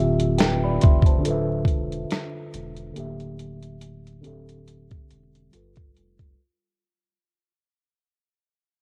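Lo-fi hip hop at 70 BPM in D dorian, hazy and reflective, with a light 16th-note swing. A worn, slightly out-of-tune tine electric piano sits up front through cassette tape and a low-pass filter, with a filter sweep across the whole clip, carrying chords such as Dm11, Gm6/D and G9 over a thick, saturated triangle sub bass, while a gritty, compressed sampler-style kit with a thumpy kick and medium-tuned snare enters at 0.2 seconds. Vinyl crackle, light reverb and digital ambience frame this home cassette recording, which fades out throughout its 6.4 seconds as a cut from a longer piece.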